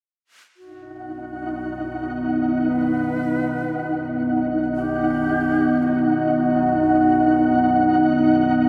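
Ominous and cavernous, this short dark ambient drone in free time and B major, cut from a longer piece, opens at 0.6 s with a breathy bamboo shakuhachi fading in with vibrato, a soft attack and analog delay for a melody. A flickering, grainy granular texture shimmers above from 1.0 s, and a calm, detuned organ-like drone fades in low in the background with ensemble chorus from 1.1 s. From 1.5 s a deep, moody, full-bodied pad with chorus holds sustained chords up front, all bathed in a lush hall reverb that leaves the mix dreamy and soaked.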